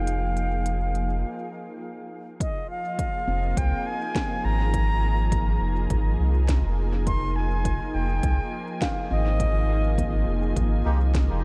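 This ambient dub fragment, cut from a longer piece, feels hazy and spacious, with a lightly swung sixteenth-note feel. A bright, reedy concert flute carries the melody with vibrato and a soft attack, its line thrown into dub echo until it drops out at 10.2 seconds. Beneath it, a calm, detuned organ-like pad holds sustained chords through ensemble chorus and its own reverb, while a meditative handpan rings out arpeggios in the background through analog delay. A round sine sub bass sits up front, and an electronic drum kit with a woody snare and crisp hats plays through dub echo; after a short break at 1.2 seconds, a punchy, overdriven electronic kick joins at 2.4 seconds. Just before the close, a breathy, nasal melodica adds brief stabs roughened by 12-bit sampler grit and dub echo, and the whole mix sits in a small room with light reverb.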